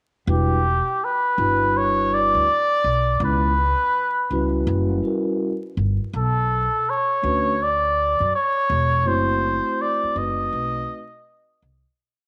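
Jazz-hop with a nocturnal, smoky mood and a swung sixteenth-note feel, this short, complete piece is led up front by a cup-muted trumpet playing a free, breathy jazz melody with light vibrato and a slapback echo. Beneath it, a soft-mallet vibraphone comps freely in mellow drop-2 voicings with its motor off, while a woody, dark pizzicato upright bass pushes a syncopated line with muted ghost notes and slides through chords such as Em9, F#7b9 and B7b9. Echo chamber reverb, small room ambience and vinyl crackle colour the sound, and the piece fades out from 9.1 s to its close at 12.0 s.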